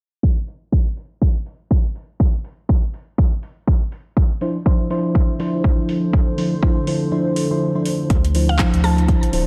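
A swung deep house groove opens this short cut from a longer piece: an overdriven, up-front electronic kick is joined by a layered kit of handclaps, rim clicks and metallic hi-hats, both re-recorded in a large room. A mellow FM electric piano enters with dark, full-bodied stabs at 4.4 seconds, colored by chorus, phaser, analog delay and a low-pass filter. Soon after, a deep, moody ambient pad sustains a minor-ninth chord with a slow attack, detuned sawtooth layers and built-in reverb, breathing with sidechain pumping. The kick drops out at 7.1 seconds as a filter sweep runs across the opening stretch, and at 8.1 seconds a round, nasal analog bass arrives while the piano's filter sweeps again. Moments later a woody, mallet-like synth pluck adds a brief, high melodic figure through chorus and delay, all set in light digital ambience for a late-night feel.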